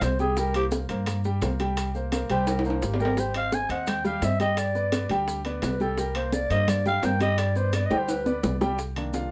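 A raspy, growling clarinet leads this sultry, sophisticated Afro-Cuban jazz passage, cut from a longer piece, playing an up-front jazz solo full of vibrato and scooped notes until it drops out at 8.4 seconds. Beneath it, a grand piano with an intimate, natural tone and audible action noise supplies the accompaniment over a woody, pizzicato upright bass with steel strings, which sits forward in the mix. Close, dry congas with a thick, damped skin and tight, high-tuned bongos, both played with soft hands, stay in the background. Ringing metal-shell timbales and grainy, mellow maracas both carry a compressed, saturated edge. Drum fills land at 2.5 and 7.9 seconds as the harmony moves from C5 through Abmaj7 and G toward a closing Cm7, all within a moderate studio reverb.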